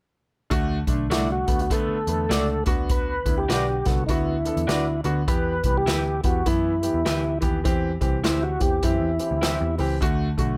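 A lightly reverberant, polished sound carries this uplifting, joyful clip from a longer 1960s-style soul piece at 101 BPM with a swung 4/4 feel in D mixolydian, where an airy big-band drum kit with a boomy kick sits up front beside a warm concert grand piano, a dark, round muted electric bass anchors the low end, and from 1.1 seconds a mellow tonewheel organ carries the melody through chorus vibrato and a slow rotary speaker while a slightly broken-up, lo-fi electric guitar adds spring-reverb stabs over chords moving from D through Bm, Em and C back to D.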